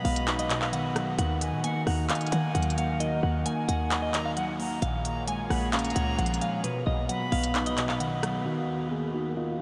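A half-time trap beat of crisp hi-hats, handclaps and rim clicks with vintage 12-bit sampler grit drives this eerie, dark hip hop excerpt beneath a punchy, tight 808-style bass, while a clean, fingered electric guitar carries the melody through spring reverb and ambient delay, an airy silver flute with vibrato adds a second line, a worn, slightly out-of-tune tine electric piano plays mellow accompaniment and a bright, evolving sawtooth pad with chorus holds sustained chords, the whole mix soaked in huge dreamy reverb until the drums stop at 8.3 seconds and a filter sweep begins at 8.5 seconds.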